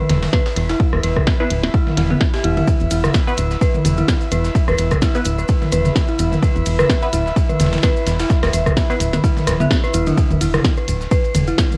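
Recorded at home on cassette with a light reverb, this cool, sparse minimal techno cut at 128 BPM swings its sixteenths around an overdriven, punchy electronic kick, a booming analog drum machine on rim click and toms, a tiny-snared click kit with clicky hats, and a gritty, sampler-style breakbeat kit sitting in the background with quiet, grainy maracas from 2.7 seconds. Up front, a rubbery, hollow square bass pumps against the kick while an eerie, warbling FM bell riff with chorus, 12-bit grit and analog delay floats over a breathy pad that fades in across the first 10.2 seconds. A muted, detuned dub chord stab with phaser and tape echo sits deep in the mix until a band accent at 9.7 seconds, just before the drop at 10.2 seconds.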